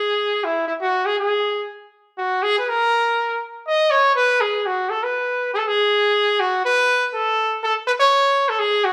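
In a straight 3/4 at 122 BPM, this brief, romantic and festive Mexican folk passage features a solo trumpet with a clear, classical-style tone and light vibrato, singing between E4 and D#5 for the full 8.9 seconds and set up front yet roomy within the reverb of a stone room.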